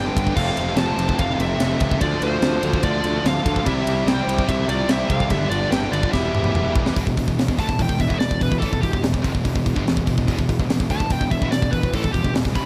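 Heavy metal excerpt at 145 BPM in E phrygian, aggressive and epic, where a bright distorted lead guitar carries the melody over a darker, delayed second lead that stops at 6.7 s, a double-tracked overdriven stack guitar riff that drops out at 7.0 s, a very quiet high-gain riff guitar and a scooped one in the background, a growly fuzz-driven picked bass, and an up-front, big-room drum kit with a high-tuned snare and tight kick, whose fill at 6.1 s leads into a lead guitar solo over an E5 chord from 7.0 s, all in a dry mix with little reverb.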